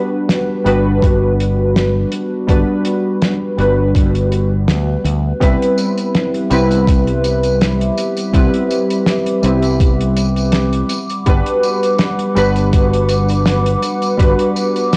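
Warbly, detuned lo-fi synth keys drenched in lush chorus and analog delay open this nostalgic, faded vaporwave excerpt at 82 BPM in G major, moving from Gmaj7 to Cmaj7 and back over a thumpy, sampler-gritty electronic kick, a damped 70s kit with a fat snare, hi-hat and tambourine, and a bright, tube-saturated fretless bass, while a dark, slow-blooming tape-like pad joins at 5.8 s, the whole piece carrying a dry, gritty cassette sound.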